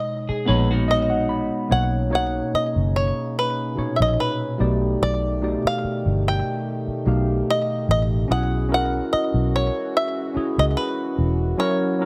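At 73 BPM in 4/4, this slow soul groove carries a light swing on the sixteenths, set in B major with a warm, romantic mood. A bright bluegrass banjo played with fingerpicks carries the melody up front, its percussive, twangy tone given a slapback echo. An overdriven tine electric piano, gritty through a combo amp and treated with analog chorus, supplies accompaniment and adds an early fill. From 0.3 seconds a lo-fi, slightly broken-up electric guitar through a small old amp plays a short picked riff, while a dark, foam-muted fingered electric bass sits round and punchy beneath. At 1.7 seconds a distant, roomy French horn section enters in the background with sustained chords as the harmony moves through Bmaj9, B7alt and E69/B, all framed by light reverb and studio ambience in this short cut from a longer piece.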